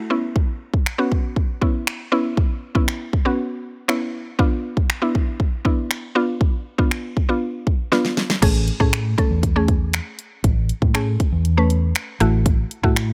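Dance-pop at 119 BPM in A major, this short, upbeat and carefree clip moves with a straight 4/4 feel. A woody, mallet-like FM synth pluck opens at 0.0 seconds with fast-attack, short-decay notes, its detuned, chorused tone pumping against the sidechain as it outlines C#m7 and then Dm6. A punchy, layered electronic drum kit joins at 0.4 seconds with kick, fat snare, hi-hat, finger snaps and crash, and a drum fill leads into the second section at 8.4 seconds. There a dark, foam-muted vintage electric bass enters low and round, also pumping with the sidechain, as the harmony shifts to Amaj7 and then F#m7/A. The dry, up-front mix keeps every line close.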